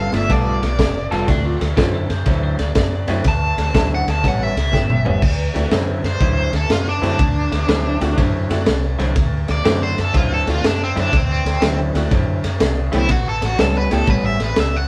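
Played live in one room with a light reverb, this swaggering, soulful electric blues shuffle is cut from a longer piece, moving at 122 BPM in 4/4 with a swung feel in D mixolydian over dominant ninth chords. A crunchy breakbeat kit sits up front, dark and gritty with a high-tuned snare, a tight kick, dark cymbals and toms, and it plays a fill just before the guitar solo begins at 5.2 seconds. Underneath, a vintage foam-muted fingered bass gives a round, punchy low end, while a rhythm guitar through a small old amp plays a slightly broken-up, compressed riff. A tack piano adds metallic, jangly accompaniment, and an electric slide guitar played with fingerpicks drifts in briefly as a second line from 1.1 to 3.2 seconds. On top, a biting overdriven lead guitar carries the melody with tremolo, its bright, picked tone taking over as the solo through to the end at 14.9 seconds.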